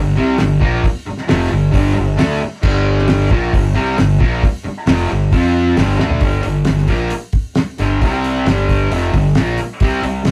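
Rowdy and raw, this garage rock excerpt opens with a bright, double-tracked fuzz guitar riff moving through power chords over a round, overdriven fingered electric bass. A cloth-damped, thuddy drum kit joins at 0.4 seconds with a fat snare, tight kick, toms and dark cymbals, and a drum fill at 6.0 seconds leads into a new section at 6.2 seconds. The guitar and drums sit up front in a small, wet booth ambience with a rough rehearsal-room sound and tube saturation.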